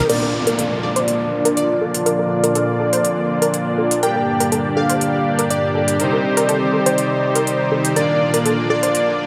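A lush hall reverb gives this short progressive house excerpt an expansive, euphoric sheen, moving at 122 BPM in a straight 4/4 in Bb major. Up front sits a smooth, detuned supersaw playing stabs through a low-pass filter and delay, its filter sweeping across the whole passage. Beneath it, an evolving wavetable pad with a vintage, warbling character holds sustained chords, softened by chorus and its own reverb. A catchy, punchy sawtooth lead carries the melody in a high register with vibrato, a noise layer and a moving notch, while a detuned pluck with a fast, decaying attack spins arpeggios through delay. A crisp, tape-tinged pop drum kit adds crash cymbal and hi-hats, and an electronic downlifter falls away by 4.0 s as the chords move from Bb through Gm and Cm and back to Bb.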